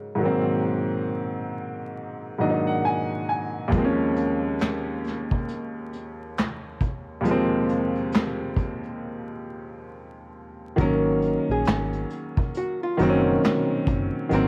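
A slow, swung lo-fi hip hop groove at 68 BPM in 4/4, this dreamy, cosy excerpt sits in Ab mixolydian and moves between Ab9sus4 and Eb9sus4 chords. A bright, woody upright piano carries the accompaniment from the start, sitting up front with a brilliant edge and playing a fill from 2.0 to 3.7 seconds. At 3.7 seconds a vintage brush drum kit enters with handclaps, hi-hat, a punchy kick and a medium-tuned snare, its pumping small-room sound rolled off at the top. After a break from 9.0 to 10.8 seconds, a dark, clean archtop guitar takes the picked melody in a hollow-body tone, joined by a round, foam-muted dub bass. The piano, drums and guitar carry a cassette tape colour, and the whole home recording is wrapped in vinyl crackle, light reverb and small room ambience.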